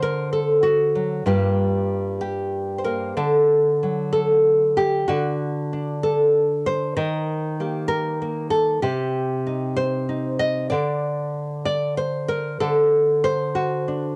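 A lone nylon-string guitar opens on a D7 chord, fingerpicked with a bright, classical tone and placed up front. This is a wistful, melancholic folk piece at 64 BPM in 6/8, played with a rubato feel and tuned to A4 = 438 Hz. The opening moves from D7 to Gm7, and a new section begins at 3.2 s on D, shifting through Eb and Cm. From 10.7 s the guitar plays outside any stated chord until it breaks off at 14.2 s, cut from a longer piece. The part spans G2 to Eb5 and carries a cassette-tape character from its home recording, set in a moderate studio reverb.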